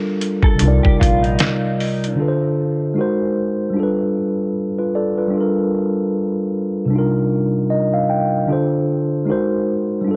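Lightly reverberant digital ambience frames this melancholic, reflective lo-fi hip hop excerpt at 76 BPM in C dorian with a swung 16th feel, where a mellow, clean, low-pass-filtered tine electric piano carries the chords up front through its built-in speakers while a muffled, pitched-down sampler kit with 12-bit grit, a thumpy kick and fat snare, a dark fingered electric guitar soaked in lush chorus and analog delay, and a brief woody pizzicato upright bass on gut strings all fall away by 2.2 s, leaving the electric piano alone to add a fill at 7.3 s and play on to 10.2 s.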